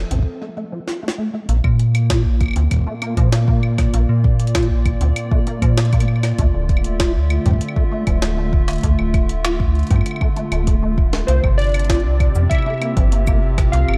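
A straight 4/4 groove drives this wistful, intricate IDM fragment, with a deep electronic kick and a gritty, pitched-up jungle sampler-style kit of snare, hi-hat, cabasa and woodblock carrying tape echo, plus a break from 0.3 seconds and a drum fill at 0.9 seconds. An up-front metallic FM bass with tube saturation anchors the low end, while a rubbery, resonant acid bass runs quiet arpeggios through chorus and delay alongside a hollow, flute-like pad holding sustained chords from Fmaj7 through Bb, Dmadd9 and Csus4. Warbling lo-fi synth keys flicker at the very start and return with a nostalgic melody at 11.3 seconds, all set in a dark, dry production.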